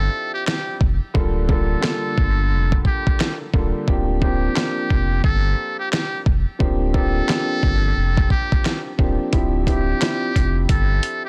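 A compressed, sampler-style soul drum kit sits up front in this gritty, dark boom-bap hip-hop excerpt, entering at 0.5 seconds with a thumpy kick, fat snare, hi-hat and handclaps, swung on the sixteenths at 88 BPM in 4/4. Beneath it, a deep sub bass with an added octave holds down the low end with a full, sustained sine-and-triangle tone and a fast attack. A clear but worn upright piano supplies the accompaniment, its woody, boxy, slightly detuned tone given long sustain and run through cassette tape coloring and high- and low-pass filtering. Over the top, a trumpet with a metal mute carries a narrow jazz-style solo melody, buzzy and thin yet brilliant, with light vibrato, a breathy edge and a smooth top, treated with filtering and digital delay. The harmony moves from Dm11 to Gm9/D and C9sus4/D before returning to Dm11 at 9.3 seconds, heard in a small room ambience with a dense, heavily limited modern master, tuned slightly below standard pitch at A4 = 437 Hz.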